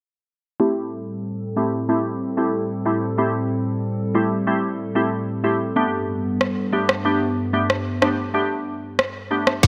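A glassy, warbling wavetable pluck and a hollow, airy pad with sidechain pumping open this tough, sultry dancehall excerpt together at 0.6 s over an Am7 that moves to Gadd9, with a filter sweep and a lush hall reverb, before an electronic island pop drum kit with a tight kick, rim click and woody snare enters up front at 6.4 s.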